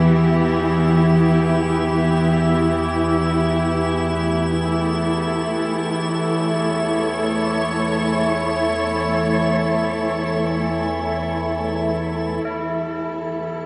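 Dark ambient drone in free time, with a dark, desolate mood, taken from a longer piece. A dark chamber cello section sits up front, its woody, bowed ensemble tone carrying sustained chords with vibrato and a soft attack, moving from E minor to A major at 4.2 seconds. Beneath it, an overtone-sweeping drone blends sawtooth and sine into a resonant low bed with moving overtones, slow attack and long release, coloured by chorus and its own reverb. High above, an icy glass pad adds an airy, crystalline unison shimmer with a noise layer, also treated with chorus and reverb. At 12.4 seconds the harmony settles on an E power chord as tubular bells enter with solemn, metallic arpeggios on E, close-miked and dry under a rawhide hammer. The whole is set in a wet cathedral reverb with a long tail.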